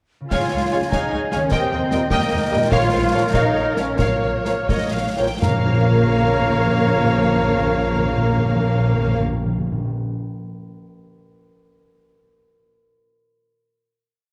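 In a straight 6/8 at 80-101 BPM, counted in dotted quarters, this short, complete cinematic cue in Bb dorian strides forward with an adventurous, determined heroism before it slows from 2.1 to 5.4 seconds and settles onto a long final chord at 5.4 seconds. A lush violin section carries the melody with focused vibrato over a driving ostinato from the violas and double basses, while the cellos sing a smooth, even line beneath and a darker, distant violin section adds a counter-melody in the background. A pure, crisp flute doubles the tune at the octave, and a cor anglais and a very quiet, roomy clarinet move in chords that follow the tune's rhythm. Brassy weight comes from a bright trombone section and a faint, distant French horn section playing short accented chords alongside sustained ones, as a thumb-plucked harp rings out rolled chords underneath. Marching snare over bass drum, with dark cymbals and toms, drives the theme until 5.5 seconds, and close, dry timpani strokes on Bb enter at 2.7 seconds. 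A generous scoring-stage reverb wraps the ensemble in a dark, warm production.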